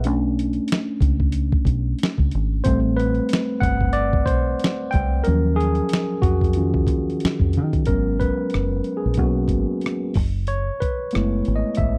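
A worn, slightly out-of-tune tine electric piano with light overdrive leads this late-night neo-soul R&B groove at 92 BPM, taking solo turns across the full 12 seconds over minor ninth and eleventh chords from Bm9 through G#m11 and F#m11. Beneath it, a deep, dark, foam-muted fingered electric bass sits round and punchy, while a dusty sampler-style kit brings a thumpy kick, fat snare, rim clicks and hi-hat with gritty, tape-warm compression and a gentle 16th-note swing. The sound is dry and close, with every part up front like a 1970s studio session, and the clip is cut from a longer piece.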